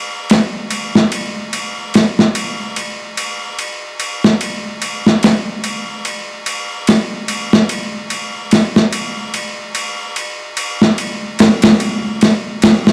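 A gritty, overdriven boom bap sampler-style drum kit of ride cymbal and medium-tuned snare sits up front from 0.3 seconds in this hypnotic, smoky trip hop fragment at 73 BPM in 4/4 with a swung sixteenth feel, bathed in a long echo-chamber reverb and a dark production dusted with vinyl crackle.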